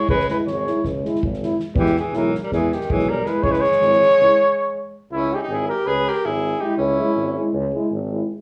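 A mellow, smooth-topped flugelhorn with light vibrato leads up front from the first moment, joined by a clear alto saxophone second line, two euphoniums (one vintage, the other warm and close-miked), a distant, roomy tuba bass and a dark soft-mallet drum kit with a fat snare and boomy kick, in this bittersweet, fiery Balkan brass band passage in 9/8 at 323 BPM counted in eighths, set in C# dorian sharp4 and moving from C#m to E and back in a small room, until the kit drops out at 4.2 s, a brief stop follows at 4.3 s, and the opening section returns at 5.1 s.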